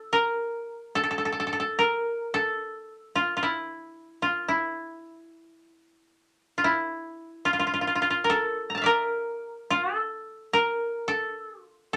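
A solo koto, plucked with fingerpicks, opens this brief passage from a longer piece of Japanese traditional chamber music, set in A miyako bushi at a slow, rubato 54 BPM in 4/4. Its dry, woody tone sits up front, moving between E4 and Bb5 in a moderate studio reverb. The mood is austere and calm throughout the 12 seconds.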